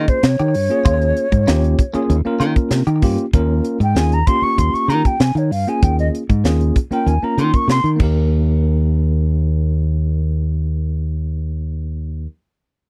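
A mellow, airy jazz flute opens with the melody over an Eb9sus4 chord, its tongued, expressive line shaded with vibrato and slapback echo. Bell-like tine electric piano, a bright fingered electric bass and compressed, picked guitar stabs with lush chorus and slapback echo play beneath it, the guitar stopping at 3.0 seconds. This is slick, funky electric jazz fusion at 96 BPM in Eb mixolydian, driven by a tight, polished funk drum kit with a high-tuned snare, crash cymbal and hi-hat that plays until 8.1 seconds; the dry, close 1970s-style studio sound keeps drums and bass up front as the chord moves to Eb, and the piano and bass carry on to 12.3 seconds.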